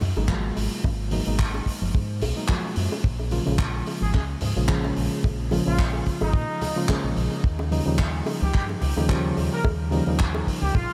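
A dreamy mix soaked in a huge ambient reverb frames this sensual, groovy nu-disco excerpt at 109 BPM in G# dorian, with a lightly swung 16th feel moving from G#m9 through A#m7 to D#9. A reedy, worn, slightly out-of-tune electric piano with analog delay and a fingered electric bass through an envelope filter both pump against a dry, tight kick with a rolled-off top, joined by a damped 70s kit with handclaps and hi-hat and bright, soft-handed congas and bongos sitting in the background. At 4.0 seconds a clear, vintage trumpet section with vibrato enters on the melody, trailed by a diffuse ambient delay.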